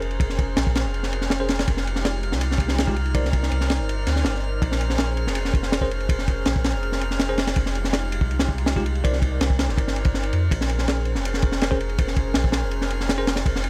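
A crunchy breakbeat kit drives this raw, atmospheric drum and bass excerpt at 163 BPM in a straight 4/4, its tight kick, high-tuned snare and dark ride cymbal sounding gritty and saturated in a small room, with a rolled-off top. Underneath sits a deep, round dub sub bass with tube saturation, while a warbling, nostalgic tape-like pad holds detuned chords through a Bb dorian cycle of Bbm9, Fm9 and Cm9, and a glassy texture of drifting overtones hovers high in the background. A bell-like tine electric piano adds bright, clean stabs with dub echo, first at 1.4 seconds and again at 5.8 and 11.7 seconds.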